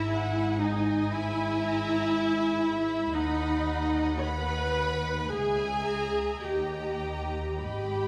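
The rhythm moves freely in a slow, rubato 4/4 at roughly 48-60 BPM, with the pulse stretching and relaxing in this brief passage cut from a longer romantic movement for string orchestra. The mood is elegiac and yearning, and the harmony drifts from E/G# to B/D#, then through A#dim/C# before settling on D# near 6.4 seconds. A close, expressive first violin section carries the melody with vibrato and gliding portamento, while a second violin section in the same high register adds a focused, more distant line. The viola section sits up front with a smooth, even accompaniment, and the cellos and double basses anchor the bass, the cellos lightly vibrated with a smooth top and the basses rich and gently attacked. A moderate concert hall reverb gives the whole ensemble a lingering, spacious bloom across all 8.1 seconds.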